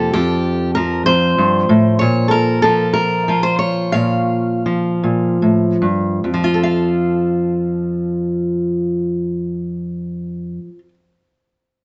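A fingerpicked steel-string acoustic guitar sits up front and plays alone in this gentle solo folk fragment, cut from a longer piece and lasting until 10.9 seconds. It moves in a rubato 6/8 at roughly 47 to 64 dotted-quarter beats per minute, in F major and tuned slightly under standard pitch at A4 = 439 Hz. The harmony opens on Fsus2, darkens to B-flat minor at 2.0 seconds as the pace slows, and settles onto a plain F chord at 6.2 seconds, where a new section begins. The guitar's warm, concert-style tone spans from low F2 up to F5. A moderate studio reverb adds some room, and nothing sounds above 7.9 kHz.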